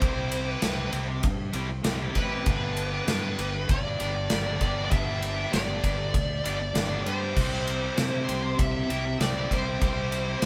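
Quiet-loud alternative rock at 98 BPM in a straight 4/4, this brief cut from a longer piece feels dark and cathartic. A high-gain lead guitar carries the melody between B4 and E5, its tone bright and distorted, while a double-tracked, overdriven electric guitar picks out a riff from G2 to G4. Beneath them, a fingered electric bass growls with punchy fuzz and overdrive in the low register from G1 to C3. A big acoustic rock kit sits up front with a boomy kick, a medium-tuned snare, and crash and ride cymbals, all four parts playing throughout the 10.5 seconds. The band sounds like it is playing live together in one room with moderate studio reverb, as the harmony moves from C to G at 2.5 seconds and back to C at 7.4 seconds.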